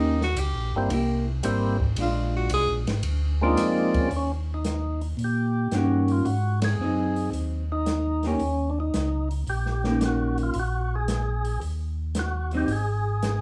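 A clear tenor saxophone with plate reverb, light vibrato and scooped notes opens this greasy, soulful soul jazz organ trio excerpt in Eb mixolydian at 112 BPM with a swung 4/4 feel, over a dark hollow-body guitar, a round tonewheel organ bass with slow rotary speaker, and a punchy, smooth drum kit entering at 0.2 seconds, before a percussive tonewheel organ with key click joins on melody from 0.8 seconds, and the band hits an accent at 6.5 seconds as the chords move from Eb7 through Ab7 to Gbadd9/Bb and Ebm6 in a small room.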